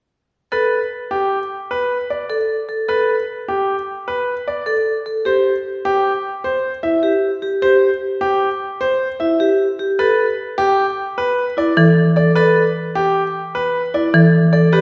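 A straight, driving six-beat pulse carries this propulsive, hypnotic fragment of minimalist classical pattern music, cut from a longer piece and steeped in a lush scoring-stage reverb. A brilliant, intimate grand piano with audible action noise and long sustain sings the upper melody, while a metallic, ringing vibraphone, played with medium hard mallets and its motor off, spins dark, smooth arpeggios just beneath it as the harmony moves from a rootless Gadd9 to E minor and then Esus4. At 11.8 seconds a woody, percussive marimba with hard mallets joins on a single low note, its close-miked, dry, full sound standing forward until 14.4 seconds.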